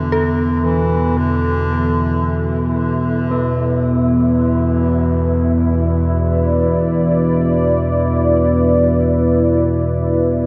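Drenched in a huge, wet reverb with a 7.1-second tail, this ominous, vast dark ambient drone drifts in free time over an up-front analog drone whose sawtooth and pulse-wave tones evolve through a moving notch and chorus. A deep, moody pad fades in with detuned unison chords and its own built-in reverb, while a very quiet, eerie FM synth bell warbles through inharmonic arpeggios. A clear, distant bass clarinet plays a brief classical-style solo melody until 2.8 s, and from 3.3 s a metallic bronze singing bowl rings in the background with slow beating.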